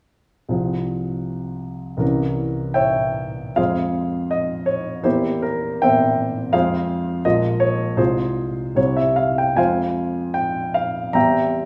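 A wet recital-hall reverb surrounds this recording, with a touch of smaller-room ambience beneath it, while the baby grand piano sits up front with a natural, warm tone and a short sustain. It is a brooding, bittersweet romantic character piece for solo piano, cut from a longer work, moving in two beats to the bar with a freely breathing rubato. The piano plays alone from 0.5 s to 11.7 s, ranging from low Bb1 up to Bb5. A brief opening phrase leans on a tense, clouded dominant harmony before a second passage begins at 3.6 s. That second passage circles through shadowed minor chords and restless dominants, never fully settling, which keeps the mood poised between tenderness and gloom.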